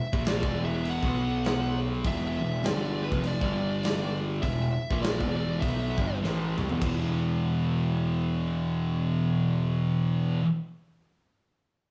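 A compressed, distorted fuzz lead guitar opens this heavy, sludgy stoner and doom metal excerpt, carrying a melody over two thick fuzz guitars, one dark in the background and one up front, both picking a riff at a swung 101 BPM in E minor. A growly, punchy, overdriven electric bass anchors the low end, while a big rock drum kit with a tight kick, medium-tuned snare and rolled-off top works crash, hi-hat and toms in a live room with light reverb. The lead drops out at 6.2 seconds as the drums play a fill, and the kit stops at 7.0 seconds, leaving the guitars and bass to grind on.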